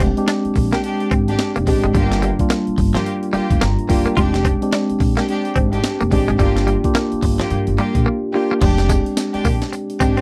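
A swung sixteenth-note breakbeat groove from a gritty, compressed sampler-style kit with thumpy kick, high-tuned snare, hi-hat, tambourine and crash drives this confident, punchy new jack swing excerpt, where a mellow phased tine electric piano comps a rootless Fm69 alternating with Gm7 and adds a short fill at 3.3 s, a bright, twangy direct guitar riff shimmers with lush chorus, a woody, growly pizzicato upright bass holds the low end, and a smooth bowed symphonic string section enters with stabs at 0.7 s, all captured in a dry, close 1970s-style studio sound.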